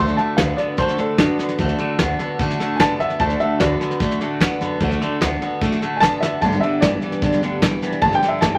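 A straight 4/4 pulse comes from a soft brush kit with a fat snare and punchy kick, its dark, rolled-off top sitting up front in a small room, and a drum fill at 6.2 seconds kicks this upbeat, rowdy rockabilly excerpt toward its change of chord. Underneath, a pizzicato upright bass on gut strings adds a thumpy low end, while a picked steel-string acoustic guitar with fresh strings fills the middle with full-bodied accompaniment. A bright, clean, twangy electric guitar plays a riff up front, colored by a phaser. The warm, woody upright piano carries the melody across the upper register. The harmony rests on D before moving to G at 6.4 seconds and a G minor seventh near the end, all set in moderate studio reverb with a layer of vinyl crackle, and the clip is cut from a longer piece.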